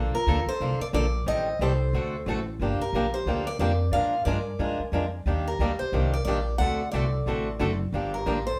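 A woody, thumpy upright bass on gut strings sits up front in this short cut from a charming jazz manouche piece in Bb major, swinging at 180 BPM. A boxy, picked swing-style acoustic guitar, also up front, carries the accompaniment through changes from Bbmaj7 to Gm7, Bb7 and Ebmaj7, while a bright, parlour-toned steel-string guitar picks the melody with audible finger squeak. Further back, a breathy, whispered clarinet with subtone, vibrato and scooped notes adds a dark, intimate second line, and the band plays together in one room under a wet studio reverb.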